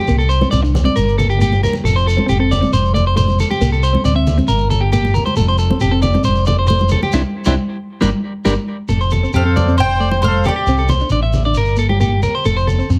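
A straight 4/4 groove at 136 BPM drives this sunny, danceable highlife guitar band piece in F major, anchored by a round, up-front fingered bass, soft-handed congas and a grainy, distant shekere under a light reverb. A twangy, slightly broken-up electric guitar picks arpeggios through tape echo over a dark, clean second guitar treated with phaser, and the band hits an accent from 7.1 to 8.9 seconds. At 9.4 seconds a bright, double-strung mandolin carries the melody alongside a punchy trumpet second line with scooped notes and light vibrato, both stopping at 10.9 seconds in this passage cut from a longer piece.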